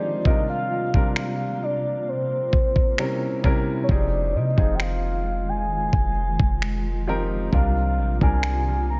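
A soft, round synth lead with chorus, tremolo and tape echo sings over a natural baby grand piano and a blurred, cloudy granular pad in the background, joined at 0.3 s by gritty, sampler-style drums with finger snaps and a thumpy kick, and at 3.9 s by a deep, boomy 808-style bass, in this late-night, sensual contemporary R&B excerpt at 66 BPM in F dorian, its echo-heavy mix moving from C7sus4 through C7b9 to Fm7.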